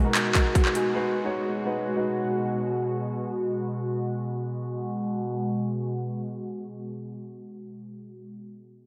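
A brooding, hard-hitting trap fragment in free time and G# minor opens on a G#m7 chord, with a mellow, filtered grand piano whose action noise is audible, a warbling, detuned tape-like pad of sawtooth and triangle tones treated with chorus and phaser, and a barely audible downlifter. An overdriven electronic drum kit comes in up front at 0.1 s with a hard-clipped kick, metallic hi-hats and handclaps; the piano stops by 2.6 s, and the nostalgic, lo-fi pad sustains until 8.2 s. A filter sweep runs through the opening section, and the mix is soaked in a huge ambient reverb that gives it a dreamy haze.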